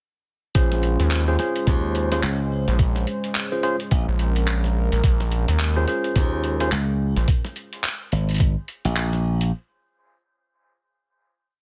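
This funky, playful glitch hop piece at 107 BPM in Bb minor opens at 0.5 seconds with a gritty, pitched-down, tape-toned boom bap kit of handclaps, hi-hat and a swung, edited snare; from 0.6 seconds the drop lands on a Bbm9 chord with a thumpy, up-front electronic kick, an aggressive sawtooth synth bass with oscillator sync and a filter sweep, syncopated tine electric piano stabs in rootless voicings with dub echo and sidechain pumping, and a dark, smooth analog pad with chorus and pumping, before a punchy slap bass with tube saturation enters at 1.7 seconds, answering the synth bass in chopped phrases within a dry mix.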